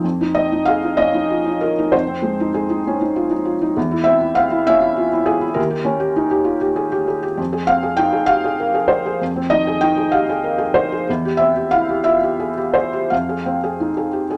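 A felt-muted upright piano opens alone and up front, its soft, mellow tone carrying the audible noise of its action. This is intimate, melancholic neoclassical minimalism in F minor, moving in a rubato 6/8 at roughly 54-67 BPM counted in dotted quarters. The solo piano spans from Eb2 up to G5, circling through Fm7, C/E and Eb7 before settling back on Fm7 at 13.1 seconds. A moderate reverb, like a small club, gives the close, hushed sound a little air around it. The whole passage runs just 14.4 seconds and is cut from a longer piece.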